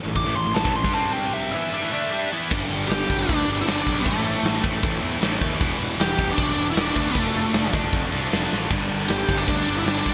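Menacing and heavy, this hard rock excerpt in A minor drives at 155 BPM in a straight 4/4, with a biting lead guitar soloing over the opening 2.5 seconds before settling into the melody. Beneath it, a high-gain distorted guitar, a very quiet double-tracked distorted guitar and a warmer overdriven guitar with spring reverb churn out riffs, the overdriven part dropping away after 2.5 seconds and returning at 8.7 seconds. Meanwhile a growly, punchy fuzz bass and an up-front arena drum kit with gated reverb, bright cymbals and a punchy kick pound along, the drums adding a fill at 8.5 seconds. A dark octave-fuzz lead adds a second line from 2.9 seconds, all set in a lush hall reverb with bright 1980s-style digital production.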